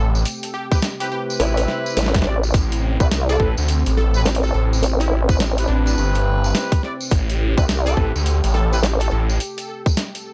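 A playful, funky glitch hop excerpt at 105 BPM in A minor opens on an Am7 chord, with a bright, catchy unison lead carrying the melody over a smooth, warbling analog pad in the background and a thick, swirling phased saw bass up front. A jingly acoustic tambourine and a compressed, pitched-down boom bap kit of hi-hat and snare join almost at once, and at 0.7 seconds a tight, overdriven electronic kick and clear, punchy horn stabs arrive, followed at 1.4 seconds by a nasal, resonant wobble bass shaped by a vowel-like formant filter. The swung sixteenth-note groove sits in a dry, gritty hardware sound with digital ambience.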